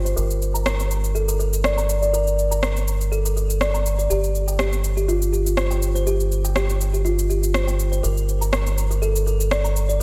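A dreamy mix soaked in lush hall reverb carries this driving, warm afro house excerpt in G minor at 122 BPM, with a swung sixteenth-note feel. A round, deep analog bass sits up front on a low G from the start, while a woody, fingertip-plucked kalimba plays mellow arpeggios through a filter sweep and a diffuse ambient delay. Layered electronic cabasa and rim click, gritty with overdrive, push the groove throughout.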